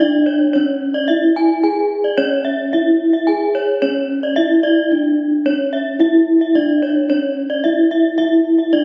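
This short gamelan fragment, cut from a longer piece, opens at 0.0 s with two bronze metallophones sounding together, setting a shimmering, hypnotic mood at 110 BPM in a straight 4/4. The lead metallophone carries the melody between C#4 and G#4, struck with padded disc mallets for a mellow, soft tone that sits up front. Above it, a second metallophone plays arpeggios from C#5 to G#5 with a horn mallet, quieter in the blend and trailed by tape echo. Both instruments use paired tuning, so each one's ringing bronze notes carry shimmering beats, with a boxy, small-room warmth. The recording, captured on a phone in the room, is bathed in a wet recital-hall reverb and has a dulled top end, giving the 8.8 seconds a hazy glow.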